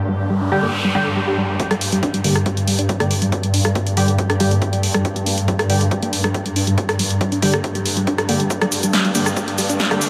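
Drenched in a huge, dreamy reverb, this dark, hypnotic peak-time techno excerpt opens with a swarming, warbling sine drone, a tight, detuned sawtooth sequenced riff under a filter sweep, and an edgy sync-sweep polysynth throwing nasal, bright stabs, while a noise sweep and riser lead into 1.6 s, where a tape-warm electronic kick and an up-front, punchy analog drum machine of snare, hi-hat, rim click and shaker drive a long build-up, with the drone, synths, hats and percussion pumping to the beat and the riser returning at 9.5 s.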